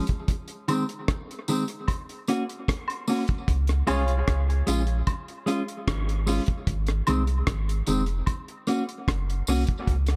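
A dark, warm production with light reverb and small-room ambience frames this laid-back, spacious dub reggae excerpt, cut from a longer piece, moving at 75 BPM in a straight 4/4 in Db major. A mellow, clean electric guitar, fingered and compressed, sits up front with dub echo on its accompaniment from the opening, while a deep reggae drum kit, acoustic, dry and smooth, sets hi-hat, a tight kick and rim clicks close to the listener. A tambourine and woodblock percussion part, heard with maracas and group handclaps in a small room, adds a softer layer carrying its own dub echo. At 3.5 seconds a round, sine-like sub bass with a fast attack and sustained tone enters up front, the loudest part of the mix, and just after, a bright, woody upright piano drops a brief brilliant stab at 3.9 seconds that trails off into dub echo. The harmony circles through Ab, Gb and Db, giving the groove an unhurried, open feel.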